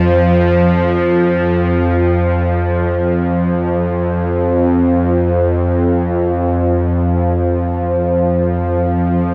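A tense, string-like bowed drone sits up front and plays alone for the full 9.3 seconds of this ominous, unsettling ambient fragment in free time, its sawtooth edge, ring-modulated grit, noise layer and vibrato swelling in on a slow attack between F2 and F3, with its own reverb and delay feeding a huge, wet space whose long decay and dark production deepen the unease as the passage shifts into a new section at 3.3 seconds.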